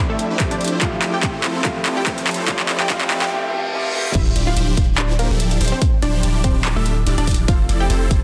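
A dense, heavily limited future bass excerpt at 144 BPM with a half-time, lightly swung feel and a bright, playful mood, where a brilliant grand piano and huge, detuned supersaw chords with phaser and a filter sweep build over a dubstep kit's metallic hats, handclaps and crash plus a punchy electronic kick, a lush, wave-folded unison pluck carries the melody, background risers and a reverse cymbal lead into the drop at 4.1 seconds, where a deep, dark sine 808 bass enters under pumping sidechain as the harmony moves from Dm11 to Fmaj7.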